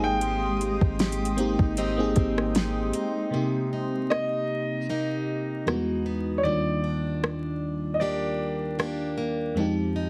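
Heavily compressed and radio-like, with vinyl crackle and a light reverb, this short cut from a longer contemporary R&B piece in C minor moves at a slow, gently swung 77 BPM with a longing, sensual mood. Overdriven, up-front electronic drums with a soft kick, fat snare and metallic hats sit loudest, while a boomy, sine-like 808-style bass stops at 2.9 seconds, and a blurred granular cloud pad with sidechain pumping and its own reverb stops at 3.3 seconds and returns at 9.6. Throughout, a lush, chorused FM electric piano holds the harmony and a picked steel-string acoustic guitar with finger squeak and slapback echo plays arpeggios, as a grand piano with long sustain and its own slapback echo carries the melody over chords moving from Abmaj7 through Cm7 and Emaj7 to Fm7.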